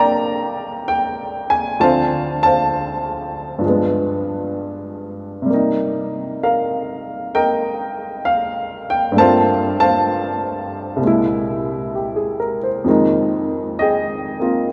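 Solo jazz at a relaxed 65 BPM in 4/4 with a gentle swing, this short cut from a longer piece features a dark, mellow baby grand piano, intimate and up front with audible action noise and short sustain, moving through rich chords from Bb69 to Dm7, G7b9 and on to Fm11 at 12.9 seconds, all bathed in the long, wet reverb of a cathedral-like hall.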